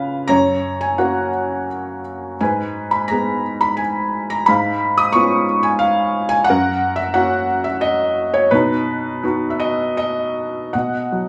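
A moderate recital-hall reverb over a small-room ambience frames this hopeful, relaxed fragment of lyrical classical solo piano in B major, where a felt-muted upright piano, mellow, intimate and placed up front, plays alone from 0.0 to 11.3 seconds in a rubato 3/4 that drifts between 76 and 91 BPM, moving through F#, G#m, C#7/G# and F# before arriving at B.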